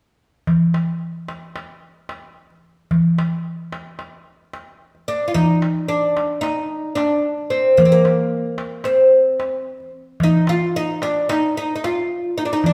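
A small, crisp darbuka with a metal shell opens the recording at 0.5 s. It is played with hard hands, sits close and up front, and sets a straight 9/8 metre at 222 beats per minute counted in eighths. The mood is melancholic and longing, in the manner of a Turkish makam ensemble, and the passage is cut from a longer piece tuned to A4 = 441 Hz. At 5.1 s a fretless, plectrum-plucked oud enters with the melody, its woody double strings placed up front and moving between Bb3 and F4. The oud sits a little louder than the drum, and the two play on together until 12.7 s. The players perform live in one room, and a large studio reverb with a 1.3 s decay adds a generous, roomy tail.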